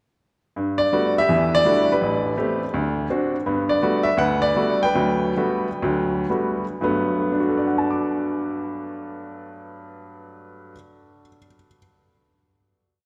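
A long church reverb surrounds this short, complete solo jazz piece, where a clear baby grand piano sits up front with an intimate, natural tone, audible action noise and long sustain. The playing is relaxed and swinging in 4/4 with a rubato feel: motif-based call phrases ride over stride accompaniment and close voicings, moving from Gmaj9 through Em11, Am9 and D7. The pace slows from 3.5 seconds, and a final chord rings from 6.8 seconds.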